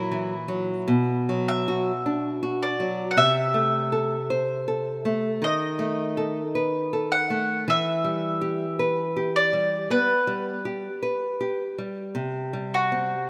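This romantic duo for bowl-back mandolin and classical guitar unfolds in E minor at a rubato 53 BPM in 4/4, its melancholic, yearning mood carried by the mandolin's picked, double-string melody sitting up front beside the small, fingerpicked nylon-string guitar accompaniment, both acoustic and warm. The harmony moves from F#7/A# through Bm, Am/C and B7/D# to a settling Em before a C5 at 12.2 seconds. A lush hall reverb surrounds the pair in this rough home demo mix, cut from a longer piece.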